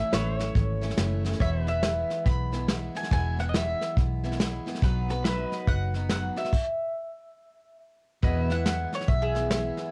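A home cassette recording with light reverb frames this nostalgic, easygoing honky-tonk and classic country piece at 141 BPM in a swung 4/4 in E major, where a woody, double-strung mandolin carries the melody up front over a bright dreadnought acoustic guitar, twangy pedal steel chords with subtle chorus, a dark, foam-muted electric bass and a soft brush kit with a punchy kick, until a stop at 6.5 seconds gives way to a mandolin solo from 8.2 seconds.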